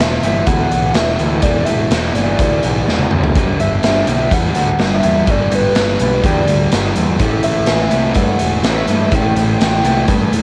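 Shoegaze and dream pop rock at 125 BPM in G major, this hazy, blissful excerpt sets a soft, round, warbling sine lead with vibrato, chorus and tape echo over a double-tracked, compressed fuzz guitar riff, a growling overdriven picked bass and an up-front, gritty garage drum kit in a pumping stone room, with a drum fill at 2.9 seconds and chords moving from E7(no3) to G5 and Am7, all captured as a home recording on cassette.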